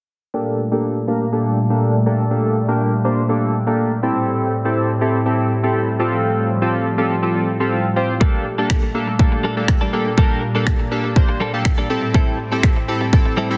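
A straight 4/4 dance-pop pulse at 122 BPM in G dorian is carried by glossy, chorused retro synth keys and a vintage string-machine viola pad, both pumping with sidechain under a filter sweep, the pad adding phaser shimmer, across Gm(add9), Am7 and F(add9) chords. At 8.2 seconds a punchy, overdriven pop kit of kick and finger snaps arrives up front, joined by a bright, clean, direct-recorded electric guitar riff. The bittersweet, energetic clip sits in a digital room ambience within a dense, heavily limited modern master.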